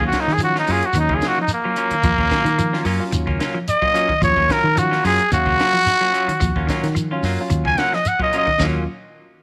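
Light reverb and studio ambience frame this hypnotic, intense afrobeat excerpt, where a raspy, growling trumpet with light vibrato solos up front over a round, foam-muted fingered electric bass, a dry compact cocktail drum kit with a punchy kick and high-tuned snare, a grainy, close shekere, two clean semi-hollow electric guitars (one picking warm background arpeggios, the other bright stabs), and a barky, lightly overdriven tine electric piano tucked in the background.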